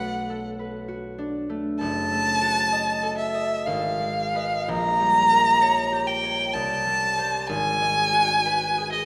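A solo violin and a concert harp begin together, opening a wistful, mysterious passage of impressionist classical music cut from a longer piece. The violin carries the melody up front, its rich, expressive bowed tone shaded with vibrato and portamento as it moves between D#5 and A#5. Beneath it, the fingerpicked harp supplies a warm, ringing accompaniment that reaches down to F#1, sitting well behind the violin in the balance. The pace is slow, between 56 and 67 BPM in 3/4, with a free, rubato feel. The harmonies drift from Bm7 through a chain of minor sixth chords to C5 and settle on G#m7 at 7.5 seconds. A wet scoring-stage reverb with a long tail surrounds both instruments through the full 9.1 seconds.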